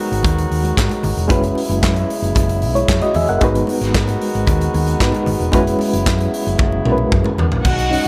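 Joyful and glamorous, this short disco cut at 114 BPM rides a punchy, up-front drum kit with handclaps, crash, hi-hat and toms in a pumping room, along with a round hollow-body electric bass and very quiet, ringing congas. A reedy, slightly out-of-tune electric piano with fast tremolo carries the accompaniment over G#m7 and F#9sus4, while a mellow, distant French horn section holds sustained chords. After a drum fill from 6.6 to 7.6 seconds, a dark, lush string section enters at 7.6 seconds with an expressive second line, all set in light reverb.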